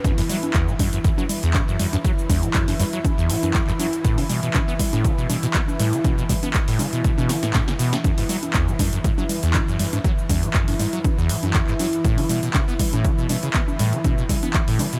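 From the first beat, an overdriven, up-front electronic kick and a punchy analog drum machine of congas, handclaps, hi-hat, shaker and snare drum drive this trippy, gritty acid house excerpt at 120 BPM in F# minor with a light swing, while a squelchy, resonant sawtooth acid bass riff, wrapped in lush chorus and diffuse delay, runs alongside a smooth, detuned analog pad whose sustained chords pump under sidechain, with a drum fill arriving at 7.3 seconds.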